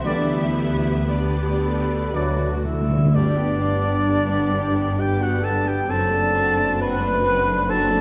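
A warm, lyrical passage from a slow romantic orchestral movement in triple time, moving with a flexible, rubato feel over a dark, softly reverberant scoring-stage sound. The mellow cor anglais sits up front with a light vibrato and soft attack, carrying a second line above the distant, lush violins that hold the melody in the background, while a clearer, more focused violin section adds another line beneath. Bowed violas, a very quiet cello section and expressive double basses with portamento fill out the string body, joined by a background French horn section holding mellow chords and a very quiet concert harp ringing through arpeggios. Brief colours come and go: an airy flute group drops out at 2.6 seconds, a vintage-toned trombone section and a distant trumpet with stabs drop out at 2.5 seconds, and a roomy clarinet enters at 1.1 seconds with its own second line. Hard-mallet timpani on calf heads play a fill from 2.1 to 3.1 seconds, and the harmony moves from G/D through D and G to D7/F#.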